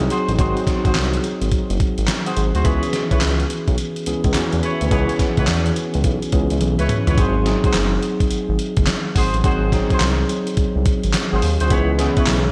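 Slick and confident, this excerpt of swung new jack swing R&B moves at 106 BPM in 4/4, with a lush hall reverb giving it a big arena sound. A bright, clean tine electric piano carries the chords from the start, moving between G#7 and C#m7, while a smooth, nasal synth bass with a touch of vibrato holds down the low end. The dusty soul sampler-style drum kit sits up front, gritty and compressed, with a thumpy kick, fat snare, hi-hat, handclaps and toms, and a drum fill from 6.6 to 7.2 seconds leads into the second section. A mellow horn section with a vintage, jazz-style tightness punctuates the groove with delayed stabs. At 11.7 seconds a brassy, warbling analog pad with chorus and a soft attack enters very quietly on sustained chords just before the cut.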